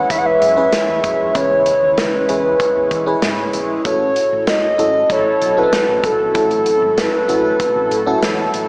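A hollow, clarinet-like synth lead opens this short, uplifting and romantic 1980s-style pop passage, carrying the melody up front with vibrato, chorus and phaser. Alongside it from the start, a dreamy FM electric piano with a soft pad layer supplies the accompaniment, while fat, brassy analog synth brass adds sustained stabs with a filter sweep and tape echo. A fretless electric bass with an amped, hollow-body tone sits low in the mix, and a modern studio drum kit enters at 0.1 s with a punchy kick, medium-tuned snare and hi-hat. At a steady 96 BPM in a straight 4/4, tuned to A4 = 436 Hz, the harmony moves from E6 to A6 at 3.9 s. A lush hall reverb gives the whole passage a big arena sound that also carries a small-speaker character.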